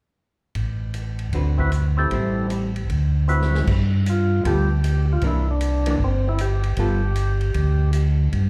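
A dark, round tonewheel organ bass line and a swinging big-band drum kit open this short soul jazz organ trio fragment together at 0.6 s, setting a greasy, swinging groove at 154 BPM in G mixolydian with a moderate swing on the eighth notes. The lightly overdriven bass organ sits up front with chorus vibrato and a slow rotary speaker, while the acoustic kit, heard in a big room with a punchy kick, medium-tuned snare, hi-hat, ride and crash, stays lower in the mix. A dark, clean, fingered hollow-body electric guitar joins at 1.3 s with accompanying chords touched by slapback echo, and a percussive tonewheel organ takes the melody moments later, its full tone marked by key click, second-harmonic percussion, slow rotary speaker and slapback echo. The harmony moves through D13, Am7 and D13 before a drum fill at 3.3 s leads into a second section built on G9 and C9. The whole performance has the feel of a live club gig heard through the venue's PA, with light club reverb.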